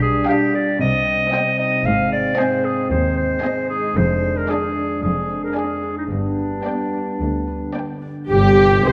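A clear clarinet sits up front over dark French horn chords, ringing harp arpeggios, a rich double bass section and a cello section from the start of this urgent, stormy, fast romantic orchestral excerpt in C minor at 113 BPM, with two violin sections carrying the melody and a second line and a viola section adding accompaniment from 0.3 s, before a mellow flute, an oboe, trumpet stabs and a tuba join at 8.3 s as the harmony lands on C5/G, all within a moderate scoring-stage reverb.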